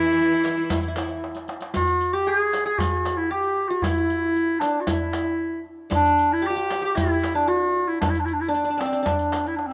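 Arabic maqam ensemble music in maqam saba on E, moving at 115 BPM in a straight 4/4 with a warm, passionate mood, heard as a section cut from a longer piece. A clear, roomy clarinet in classical style carries the solo melody up front from the start, while a plucked qanun with bright-edged triple strings plays a second line alongside it throughout. A bright, biting studio cello section, bowed with light vibrato and sounding distant, adds an intense second line only for the opening 1.2 seconds. The darbuka, with a crisp, deep metal-shell sound played with soft hands in a live room, and the riq, with bright jingles and a vintage, band-limited tone struck with hard hands, enter at 0.2 seconds. A drum fill from 1.2 to 1.7 seconds leads into the next section, with another fill at 9.6 seconds. The mix has the rough feel of a home demo, with light studio reverb.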